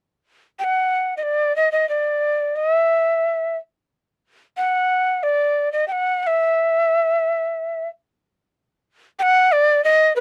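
Andean folk in a melancholic, wistful mood at 91 BPM in 3/4, with a solo cane quena playing alone from 0.6 to 10.2 seconds, its breathy, warm, end-blown tone carrying vibrato, a crisp chiff on its attack, rolled-off highs and an unsteady quality, heard up front in a dry, close 1970s-style studio sound with light reverb, moving into a new section at 8.5 seconds in this short cut from a longer piece.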